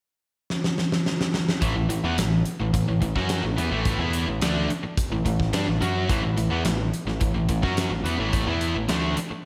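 Classic rock at 107 BPM in A major, driving and swaggering: a big, up-front drum kit with a fat snare and tight kick bursts in with a fill at 0.5 seconds, then at 1.6 seconds a bright, distorted guitar riff up front, a compressed, overdriven second guitar in the background and a growling, round overdriven bass all land on A, filling a big arena sound with lush hall reverb.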